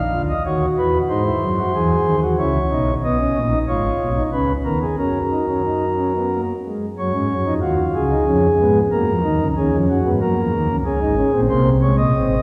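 A soft pipe organ on its flute stops carries this brief baroque-style fugue alone, sitting up front with a warm, romantic voicing that spans from G#1 up to E#5. The mood is joyful and elegant, moving at 93 BPM in a straight 3/4. The harmony opens through D#m, G#7 and C#m before settling into F# major from 3.0 s, and a second section begins at 7.0 s, passing from F#5 through C#7/E# back to F#. The organ is heard in a church or concert hall, bathed in a lush church reverb with a 2.7-second decay that lets each chord linger in the space. Tuned slightly above standard pitch to A4 = 441 Hz, this 12.4-second fragment is cut from a longer piece.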